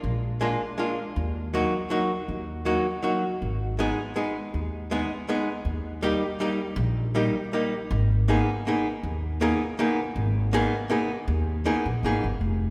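A woody upright bass opens this short cut from a whirling, nostalgic musette waltz, its growly pizzicato notes on steel strings sitting low in the mix. Moments later, at 0.4 seconds, a miked and amplified archtop guitar joins with dark, clean, picked chords that ring with a hollow-body tone and sit up front as the accompaniment. The three-beat lilt carries a gentle swing, and the harmony moves from a dominant seventh chord to a minor chord before shifting to a new key at 3.4 seconds, where it passes through a major chord and settles on a minor chord with an added ninth. A lush church reverb surrounds the pair, lending the duo a spacious, hall-like glow. The guitar drops out at 12.3 seconds, leaving the bass to sound alone until it ends at 12.7 seconds.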